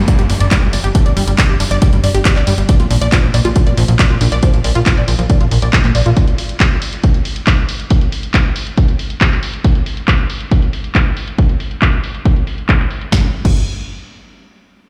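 Emotional and euphoric, this uplifting trance excerpt opens with a very quiet downlifter over an up-front, funky sawtooth bass with filter pluck and sidechain pumping, while a tight, detuned arpeggio synth runs through chorus, phaser and digital delay until 6.1 seconds. A punchy, tape-warm electronic kick and an analog drum machine, playing crash cymbal, handclaps, hi-hat and a low-pass-filtered snare, drive on to 13.5 seconds, and the bass briefly returns at 13.1 seconds. The mix is steeped in large studio reverb, as if played on a big sound system in a bare room.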